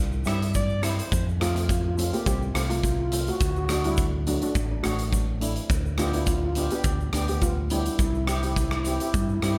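A straight, bouncy 4/4 groove at 105 BPM drives this festive calypso passage in F major, with a big rock drum kit's punchy, up-front kick, hi-hat and rim click, a dark, round fingered electric bass and a grainy shaker tucked in the background. A mellow, shimmering steel pan carries the melody while a second, metallic steel pan plays accompaniment, both set in a boxy small room. A tight, warm horn section with vibrato adds a brief second line from 0.3 to 1.3 seconds, all under light reverb as the chords move from C through F, D and G/D back to C.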